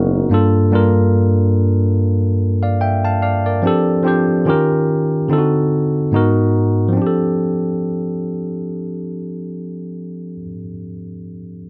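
Soulful and smooth, this short R&B excerpt at 72 BPM in F major swings gently in 4/4 as a lone barky tine electric piano, bright and clean through a combo amp and placed up front in a dry, close 1970s-style studio sound, plays accompaniment from G2 to A5 across lush chords such as Gm9, Eb9, D7b9 and Abm9 before settling on F69 at 7.0 seconds.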